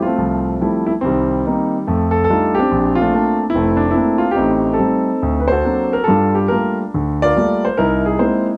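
Solo jazz in F major at 143 BPM, this sophisticated 8.6-second fragment of a longer piece features a concert grand piano with a natural, up-front sound and deep bass, spanning F1 to D5 in a rubato swing feel. The harmony moves through rich colors such as Fmaj9, F13, Bbmaj9, Am7b5 and D7b13 before settling on Gm9 and an altered C7. Light reverb and a dark, warm production keep the tone soft-edged and warm.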